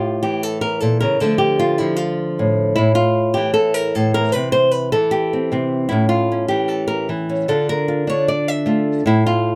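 A close, detailed recording with light reverb captures a solo flamenco guitar placed up front, its bright acoustic tone marked by audible finger squeak. This fiery yet mournful flamenco excerpt moves at 153 BPM in a straight 4/4, set in A phrygian dominant with the tuning at A4 = 439 Hz. The fingerpicked guitar carries the whole passage alone from 0.0 to 9.6 seconds, ranging from A2 up to E5. Its harmony circles from A to Dm, A5 and C, then returns through A and Dm to close on A5 at 9.0 seconds. Cut from a longer piece, the passage feels like a single brooding statement, heated and sorrowful at once.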